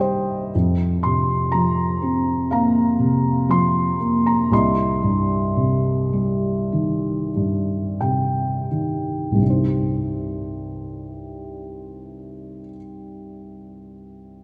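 Classical solo piano in a melancholic, reflective mood, played with free rubato on a felt-muted upright whose soft, dark tone sits intimate and up front across its full span from low bass to high treble. Brief felt fills open the passage and return around 7.3 seconds as the pace slows, with the harmony moving from C minor to a suspended chord and back before a new section begins at 9.4 seconds. A long, wet church reverb surrounds the piano, and the fragment is cut from a longer piece.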